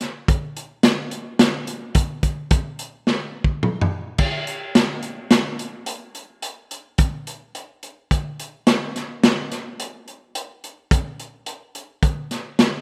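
A straight, driving 7/4 groove at 107 BPM carries this intricate progressive instrumental fragment, played on a crunchy, saturated breakbeat drum kit of kick, snare, hi-hat, toms and crash cymbal, with dark cymbals, a tight kick and a medium-tuned snare up front in a small room with light reverb, a drum fill from 3.1 to 4.2 seconds leading into a new section, all captured in a rough home demo mix.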